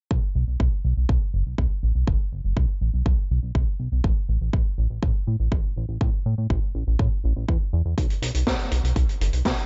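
A chorused synth bass and a punchy, layered electronic kick open this short italo disco excerpt at 122 BPM, setting a danceable, bittersweet mood in a straight 4/4 pulse. The bass is retro and glossy, mixing pulse and sawtooth tones with pulse-width modulation, a filter sweep and a moving notch, so its sustained, fast-attack notes keep evolving, while the tape-warm kick sits up front with the close feel of a small room. At 8.0 s a street-band drum kit joins with hi-hat and a high-tuned snare, its acoustic sound mid-forward with a rolled-off top, and the whole mix stays dark and dry with little reverb.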